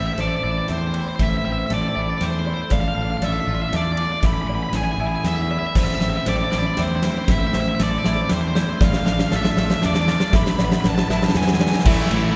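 A huge arena drum kit drives this melancholic, cathartic post-rock passage, its punchy kick, fat snare and bright cymbals sitting up front as a drum fill runs through a build-up lasting almost 12 seconds. The piece moves at 118 BPM in a straight 3/4 in A harmonic minor, cycling through Am, Dm/A and E/A twice. A crunchy overdriven guitar carries the melody, while a growly fuzz-toned fingered bass anchors the low end with overdrive. Beneath them, a twangy, scooped electric guitar plays clean arpeggios bathed in spring reverb, and a felt-muted upright piano adds soft, intimate, vintage arpeggios, both sitting in the background. A lush bowed string section holds very quiet sustained chords with smooth vibrato until 11.8 seconds, when a thick, double-tracked fuzz guitar bursts in with a distorted riff. The whole passage rings in a concert hall with moderate reverb, and it is cut from a longer piece.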